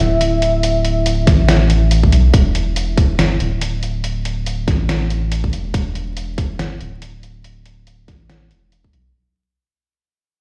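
Vinyl crackle and a stone room's reverb, as if played on a big sound system in a bare room, frame this brooding, cavernous slice of deep dubstep at 141 BPM in E minor, with a swung, half-time feel. A dark, detuned sawtooth pad with chorus holds sustained chords only until 2.4 s, while a round, soft sub bass sits up front beneath a muffled, pitched-down sampler-style kit of hi-hat and snare. A tight, layered electronic kick arrives at 1.3 s, and from 2.3 s the piece fades out.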